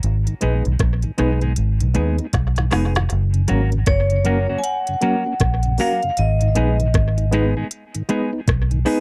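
A dry, close recording in a 1970s studio style frames this sunny roots reggae groove, cut from a longer piece, moving at 78 BPM in 4/4 with a swung sixteenth-note feel in F# major. Up front, a dark, round, foam-muted electric bass sits beside an electronic drum kit with a soft kick, woody snare and smooth hats, its sound overdriven, given a slapback echo and re-recorded in a small room; a drum fill arrives at 2.3 seconds. A reedy electric piano adds stabs, lightly overdriven with a fast tremolo, while a clean, compressed, fingered electric guitar carries dub echo and a mellow, flute-like tonewheel organ with key click and a stopped rotary speaker sits in the background. The chords move from G#m to F# at 3.1 seconds and back to G#m, and just after that change a metallic, ringing vibraphone played with hard mallets, its motor off, enters up front at 3.9 seconds with a bright melody trailed by dub echo.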